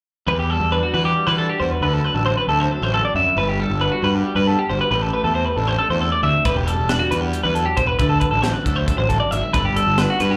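A bright, compressed twelve-string electric guitar plays arpeggios up front from the start, together with a round, fuzzed picked bass and a clean electric guitar accompanying in the background, with slapback echo on both guitars, in a playful, intricate math rock and midwest emo passage at 272 BPM in 7/8. The harmony cycles through Em9, D9, Gmaj9 and Am11 before returning to Em9. At 6.5 seconds a crisp fusion drum kit enters with an airy, polished sound, a high-tuned snare and a punchy kick, all heard as a live club gig through the venue's PA.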